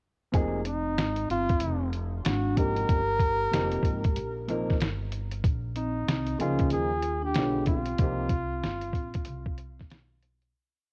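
A swung 16th-note boom-bap beat at 94 BPM in 4/4 drives this short, nocturnal and mellow jazz-hop piece in F minor, tuned slightly low to A4 = 437 Hz. The sampler-style drum kit sits up front, compressed, pitched down and muffled, with a thumpy hard kick, a fat backbeat snare and hi-hat, all colored by cassette tape. Beneath it, a woody pizzicato upright bass with gut strings walks through the changes, adding slides and chromatic approach notes. A dark upright piano comps freely in quartal voicings with long sustain over chords moving from Fm9 through Fm11, Bbm11 and Bdim7 to a closing C7sus4, dropping out at 8.3 seconds. The bucket-muted trumpet carries the motif-based melody up front, veiled and breathy with light vibrato and a smooth top, its call phrases trailed by tape echo. A soft-mallet vibraphone rings in the background with a metallic shimmer and slow motor vibrato, tracing a harmony line mostly in thirds inside a boxy small room, before the whole home-cassette recording fades out from 8.0 seconds.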